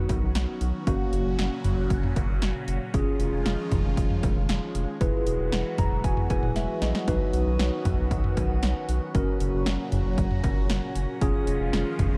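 A punchy, up-front house drum kit with kick, snare, hi-hat, toms and cowbell drives this nostalgic, wistful synth-pop excerpt at 116 BPM in F# major, over a round, deep analog bass, a clean tine electric piano with medium tremolo and shimmer reverb that plays a fill at 5.5 seconds, and a swirling, detuned analog pad steeped in phaser and chorus, with a drum fill at 6.6 seconds and a dark, lightly reverberant production.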